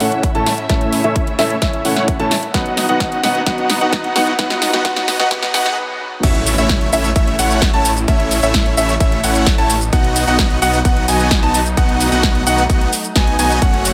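Powerful and euphoric, this 130 BPM festival progressive house clip builds with filter-swept, pumping supersaw riffs, echoing grand piano arpeggios, a background baby grand, distant bowed strings, a big-room drum kit with punchy snare and metallic hats, a faint riser and impact, and a punchy up-front kick, until the drop at 6.2 seconds brings in a thick, chorused detuned saw bass.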